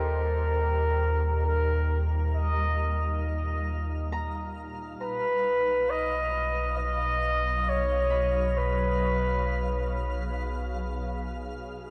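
Ambient music with a weightless mood, in which a distant, roomy flugelhorn carries the up-front melody through tape echo until 10.3 seconds, over a round, deep analog bass, a shimmering, detuned pad that fades in under chorus, ringing fingerpicked harp arpeggios in the background, and a twinkling granular texture that also fades in, set in a huge reverb with the warbling pitch drift of worn cassette tape.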